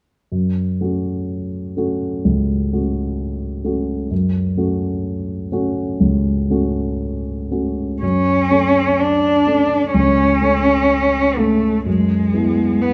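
Yearning and solemn, this romantic classical fragment for cello and grand piano unfolds with a free rubato feel, as a dark, mellow concert grand with deep bass and short sustain lays down the accompaniment from 0.3 seconds before an expressive bowed cello, warm with vibrato and portamento, enters with the melody at 8.0 seconds, both up front in a moderate recital hall reverb.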